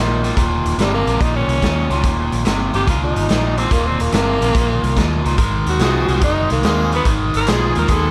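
A swung shuffle at 143 BPM in 4/4 drives this swaggering, rollicking electric blues excerpt, with the raw garage drum kit entering at 0.2 seconds on hi-hat, kick and snare, its punchy kick and medium-tuned snare sounding saturated and gritty in a bright stone room, dark with a rolled-off top and sitting up front. A growling tenor saxophone takes the solo from the start, raspy and present with vibrato and a jazz style, carried by a digital delay. Beneath it, a biting overdriven guitar plays a picked riff up front, while a vintage muted fingered electric bass gives a round, foam-muted, amped low end. The harmony moves from Eb to Ab7 at 5.4 seconds and then Abm7. At 5.8 seconds a clear horn section joins with loose, close-miked stabs in the background, touched with light vibrato, all within a light reverb.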